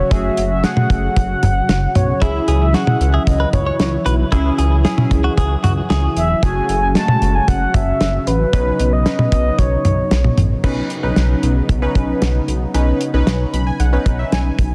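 A dense, heavily limited modern master with light studio reverb carries this melancholic, nocturnal synth-pop excerpt at 114 BPM in straight 4/4, tuned to A4 = 439 Hz and moving through F#madd9, C#m and Badd9. Up front, a horn-like, warbling sawtooth lead with chorus, delay and vibrato sings the melody over a glossy, retro pulse-width-modulated synth bass and a damped, dry 70s drum kit with tight kick and dark cymbals. A soft-attack detuned pad holds sustained chords, round analog keys with chorus and phaser add accompaniment and a fill at 13.3 seconds, and a clean, direct-recorded electric guitar with vibrato effect and delay plays a second line from 2.2 to 6.3 seconds.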